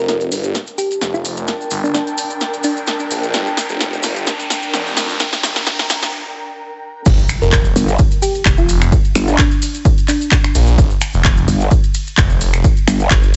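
A punchy electronic kick drops in at 7.1 seconds, followed by a growling, wobbling bass at 7.8 seconds, landing on a swaggering, bouncy G minor bass house groove at 129 BPM that a swirling phased saw bass, tine-like synth pluck, cloudy granular pad, background riser and impact, house drum kit and grainy maracas build toward through the opening seconds.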